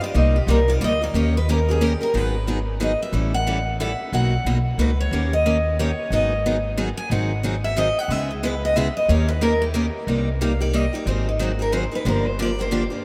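Acoustic string swing in G# minor at a brisk 181 BPM in 3/4, this fiery, swinging fragment of a longer piece features a bright, fresh-stringed picked steel-string guitar carrying the melody with audible finger squeak, a boxy parlour-toned second guitar in accompaniment, and a woody, thumpy gut-string upright bass played pizzicato, all set up front in a vast, echoing space with a huge ambient reverb.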